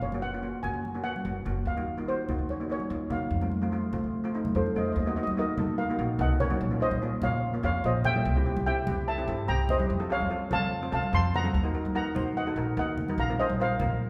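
Dramatic and driving, this calypso excerpt opens with a mellow, shimmering lead pan played with soft rubber sticks carrying the melody up front, while a bright set of cello pans struck with hard rubber sticks fills in the accompaniment beneath it. A woody pizzicato upright bass on steel strings anchors the low end, and thick-skinned, medium-tuned congas played with soft hands sit in the background. The ensemble rings out in a reverberant recital hall, and the harmony shifts through minor colours such as Ebm7 before a new section begins at 5.0 seconds, bringing chords like Bbmadd9.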